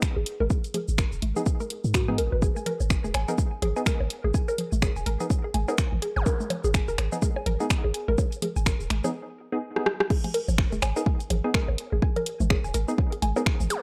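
Minimal techno at 125 BPM in G# minor, cool and hypnotic, with a swung 16th-note feel and a dry, gritty hardware sound, cut from a longer piece. An overdriven, punchy kick sits up front with a house kit of bright hats, snaps, rim clicks, shaker and crash, while a deep sine sub bass with a pitch-drop attack pumps against the kick, analog-delayed congas and bongos add texture, and a squelchy, resonant blip pluck carries the riff through phaser, 12-bit sampler grit and tape echo. Crisp, dark wavetable chord stabs enter at 1.4 seconds, a zap punctuates the groove at 6.2 seconds, and a drum fill leads into a drop at 10.1 seconds.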